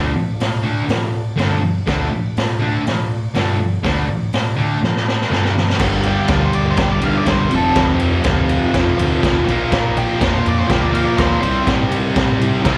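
Heard as a live club gig through the venue's PA with a light reverb, this swaggering, raw garage rock clip in D minor drives along at 122 BPM, led by an up-front, double-tracked fuzz guitar riff with slapback echo over a round, dark fingered bass and a very quiet, mellow overdriven combo organ holding sustained chords with light vibrato. A gritty, punchy drum kit with a high-tuned snare and rolled-off top comes in at 0.4 seconds, and a drum fill alongside an organ fill at 4.8 seconds leads into a new section moving through Gm, F, Bb and C. At 6.1 seconds a dark octave-fuzz lead guitar with slapback echo takes up the melody.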